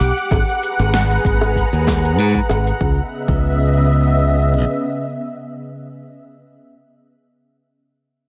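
A silky, vintage string machine with ensemble chorus holds sustained chords from the first moment of this wistful, smooth sunset chillout excerpt at 96 BPM in C# dorian, joined by a bright, growly fingered electric bass up front, an overdriven electronic shaker with a punchy snare, and a twinkling granular texture with its own reverb and analog chorus in the background. A deep, overdriven electronic kick and tight, high-tuned bongos played with soft hands enter at 0.3 s over G#m9, and the harmony moves to C#m9 at 2.8 s, where the shaker, snare and texture fall away. In a dreamy mix soaked in plate reverb, the rhythm section then thins out, leaving the strings to ring on alone until 6.1 s.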